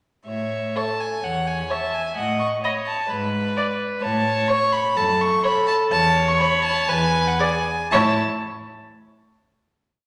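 A reverberant recital-hall sound frames this brief, spirited and cheerful classical-period string quartet piece with a rubato feel: an up-front, airy gut-string violin carries the melody from 0.3 s, a distant, dark second violin enters at 0.8 s with after-beat and sustained chords, a reedy viola adds a counter-melody and held chords, and a nasal, distant cello plays bass on the beats, before the quartet settles on a final chord at 7.9 s.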